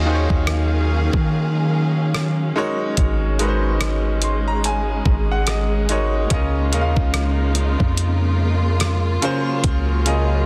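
Contemporary R&B at 72 BPM with a swung sixteenth feel and a sensual, longing mood, this excerpt pairs a brilliant, up-front grand piano, which adds a fill from 3.8 to 6.3 seconds, with smooth bowed studio strings carrying vibrato and sidechain pumping, a deep, boomy 808-style bass with a sine tone and noise layer, and a thumpy, sampler-style 12-bit drum machine of kick, hi-hat and rim click entering at 0.3 seconds, all moving through Ebm11, Ab7sus4, Db6 and Gbmaj9#11/Db in digital ambience under a dense, heavily limited modern master.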